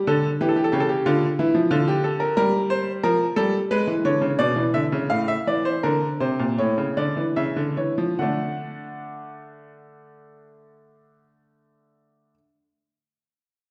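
A bright, up-front grand piano opens this serious, driving baroque-style two-part invention in 4/4, playing alone from 0.1 to 12.3 seconds across a range from A2 to F#5 at a tempo between 72 and 92 BPM. The tempo slows between 1.1 and 8.2 seconds as the harmony moves from A7 through Dm, Fadd9 and a rootless G#dim before settling on D at 8.2 seconds. The piano's vintage, short-sustained tone sits in a wet recital-hall reverb, giving this cut from a longer piece the resonance of a church or concert hall.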